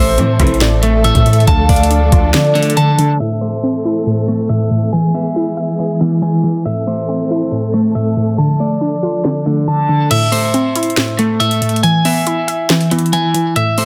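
A slightly broken-up, compressed electric guitar sits up front with bright, delayed arpeggios through this dark, melancholic half-time hip hop and trap excerpt, over a warbling, nasal lo-fi pluck with chorus, lush bowed symphonic strings holding sustained chords until 10.1 s, brief soft-attack string stabs, a velvety detuned synth lead and deep sine 808 bass that both drop away before 3 s, and a trap kit with a knocking kick, sharp snare and metallic hats, set in light reverb and a dense, heavily limited master.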